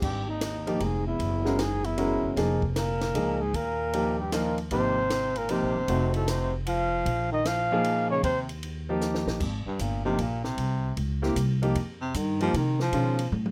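Relaxed and swinging, this small-group jazz piece in the swing-and-bop style moves at 153 BPM in 3/4 with swung eighths, set in Ab major and cut from a longer piece. A warm flugelhorn carries the melody up front with a soft attack, scooped notes and vibrato until 8.4 seconds, while a breathy, close-miked baritone saxophone adds a low second line beneath it. A clear, vintage-sounding concert grand piano with deep bass supplies smooth accompaniment, and a woody, thumpy pizzicato upright bass with steel strings anchors the harmony near the front of the mix. The compact cocktail kit sounds dry and natural, with dark cymbals, a high-tuned snare and a punchy kick, and it plays a fill at 9.0 seconds. From 9.4 seconds the baritone saxophone steps forward for a solo, all within a light reverb.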